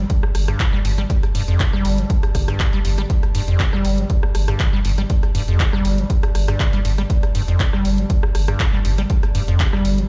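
A raw, driving acid house excerpt heard as if through a big sound system in a bare room, where a squelchy, resonant acid bass riff with filter sweeps and overdrive rides over a thick, saturated sub bass and an up-front, dry electronic kick, while a punchy analog drum machine adds handclaps, hi-hat and rim clicks and a warbling, nostalgic lo-fi pad fades in from 0.0 seconds in the background, all with a light swing and sidechain pumping on the bass and pad.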